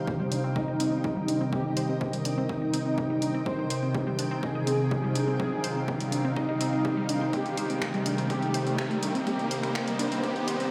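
Melodic techno at 124 BPM in a cinematic, driving build-up over a single F7sus2/C chord. It features a nasal, detuned analog pad with chorus and tremolo, a faint wave-folded drone with moving overtones, a blurred granular cloud pad high above, a bright unison pluck arpeggio with delay, a punchy electronic kick, drum-machine finger snaps and hi-hats, and a smooth supersaw melody with tape echo. The pad, cloud pad, pluck, hi-hats and supersaw pump under sidechain ducking while filter sweeps move across the arpeggio and supersaw. A background riser enters from 4.0 seconds, and everything is set in a lush hall reverb on a big system in a bare room.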